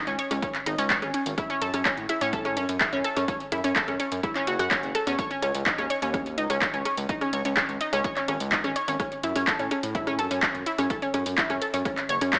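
A round, detuned analog pluck spins chorused, delay-echoed arpeggios over a gritty, saturated synth bass with oscillator-sync bite and an up-front deep house kit of overdriven handclaps, metallic hi-hats and rim clicks, while a punchy electronic kick joins at 0.4 s and the pluck and bass pump with sidechain movement in this hypnotic, cinematic melodic techno excerpt at 126 BPM that moves between F#m7 and C#sus2 inside a lush hall reverb and an AM radio sound.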